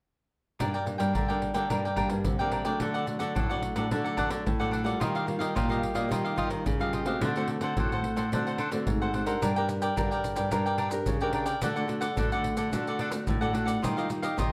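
This samba and choro excerpt, cut from a longer piece, has a lively yet nostalgic mood in a straight four-beat feel. A crisp, picked cavaquinho sits up front in the accompaniment, joined by a fingerpicked nylon-string guitar filling out the harmony and a second nylon-string guitar carrying the bass line, both played in a warm classical manner, with one of them strung with fresh strings. Close, hard-handed percussion of deep surdo, pandeiro and maracas drives the groove from the front of the mix. All four parts play together from 0.6 seconds to the end, moving through a minor-key progression of Gm, D, Ebadd9 and D7, and a second section begins at 9.4 seconds. A moderate large-studio reverb gives the ensemble a sense of space.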